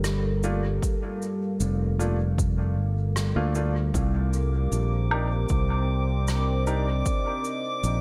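A deep, moody ambient pad opens this meditative ambient dub excerpt at 77 BPM in C dorian, its detuned sawtooth and sine layers sustaining chords from Gm7 to Cm7 under chorus and a built-in reverb that lends a dark, evolving haze. Beneath it, a fingered electric bass sits up front with a direct, amped tone, while rim click, cabasa and woodblock ring out with an acoustic, big-room character and a dub echo trailing behind them. A clear, worn upright piano drops in stabs from 0.4 seconds, its woody, slightly detuned voice carrying audible action noise, long sustain and its own dub echo. A punchy, layered electronic kick drum, re-recorded in a small room, anchors the straight 4/4 pulse. From 4.3 seconds a calm, glassy harmonics texture drifts in high above, its drifting overtones wrapped in chorus and reverb, and the whole sits in light studio ambience.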